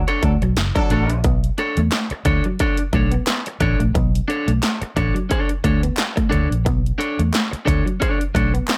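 Set in a digital ambience, this sly, cool funk excerpt moves at 89 BPM in B minor with lightly swung 16ths, as a round, foam-muted fingered bass and a punchy, layered dance drum kit sit up front beside a compressed guitar at the edge of break-up over a Bm9, while a clean picked guitar riff runs through analog chorus, a distant horn section with light vibrato joins the band accent from 0.2 to 1.2 seconds, and hollow group handclaps enter at 1.9 seconds.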